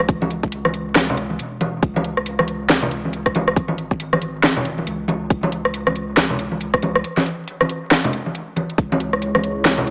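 Overdriven, up-front drums lead this cavernous, dark deep dubstep fragment, with a tight electronic kick layered under a garage kit of handclaps, hi-hat, rim click and a cracking snare. The groove sits in a half-time feel with a 60% swing on the sixteenths, and the whole passage rests on a single C# minor chord. Ringing acoustic congas, captured in a small room, add their own dub echo from the opening moments. Beneath them, a soft, round sub bass built from triangle and square waves holds a low, sustained foundation across the full length. Only at 9.1 s does a deep, moody pad of detuned sawtooths with a sub octave drift in, mellow and warm with chorus and its own reverb. A moderate spring reverb and digital ambience frame the mix, while vinyl crackle and a small-speaker tone give this cut from a longer piece a worn, lo-fi character.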